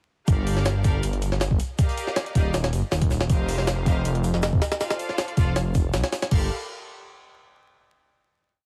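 Dark and atmospheric, this short drum and bass and jungle piece is a single drop from 0.3 seconds, led by an up-front, gritty sampler-style kit playing a heavily chopped breakbeat with a thumpy kick and high-tuned snare, while a dry soul kit with a rolled-off top loops its edited break in the background. A thick, menacing detuned saw bass carries a dub-style line under a lush bowed string section holding close-voiced chords with syncopated pushes; the strings carry vintage 12-bit sampler grit and the bass carries tube saturation. The mix sits in a small room with a heavily compressed radio sound and vinyl crackle, and it closes on a final chord at 6.3 seconds.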